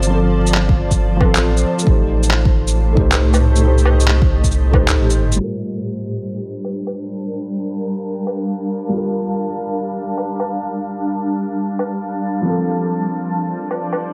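A soft, intimate felt-muted upright piano with 12-bit sampler grit and tape echo opens this melancholic, rainy future garage excerpt together with a bright, blurred granular cloud pad, a round dub sub bass and muffled, pitched-down shaker, handclaps and woodblock in a swung groove, with the piano, pad and bass all pumping under sidechain. A deep, layered electronic kick enters at 0.7 s and drops out at 4.9 s, and the sub bass stops at 5.4 s as filter sweeps run across the drums and the whole track. Light reverb and vinyl crackle add a hazy sheen over seventh chords moving from Dm7 through Am7b5 to Gm7 and Dm7/F.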